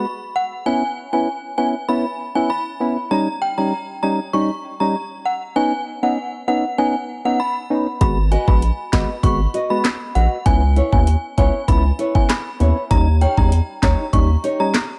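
A chiming FM synth carries the melody from the start, its inharmonic, ringing tone treated with ensemble chorus, tremolo and tape echo, in this tough, bouncy dancehall excerpt cut from a longer piece. Beneath it a hollow, percussive organ stab with chorus supplies the accompaniment, moving through minor-seventh and dominant chords over a straight 4/4 feel. At 8.0 seconds the groove fills out: an electronic island pop drum kit arrives with a knocking kick, sharp snare, metallic hats, handclaps and rim clicks, overdriven and re-recorded in a small room, while a deep, thick saturated sub bass sits up front beneath it. A dark, small-sounding nylon-string guitar slips in at 8.3 seconds with fingerpicked arpeggios treated with tape echo. Light reverb and digital ambience frame the mix, with the drums and bass carrying the weight.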